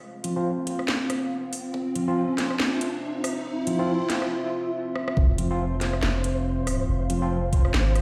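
A swung, half-time groove in 4/4 drives this heavy, meditative deep dubstep clip, cut from a longer piece. A dark, moody pad built from detuned sawtooth and sine layers with a sub octave holds slow-attack chords under chorus and its own reverb, while a clean tine electric piano plays stabs through a low-pass filter sweep and dub echo. A knocking, tape-warm electronic kick joins a garage kit of metallic hats, rim clicks and a cracking, up-front snare, and an electronic riser climbs through the build-up to a short break and a drum fill at 5.0 seconds. The drop lands at 5.2 seconds, bringing in a round, soft dub sub bass, also up front, with a faint flickering, granular texture hovering high above at 5.5 seconds. The whole mix sits in a bare stone room, heard as if through a big sound system with light reverb.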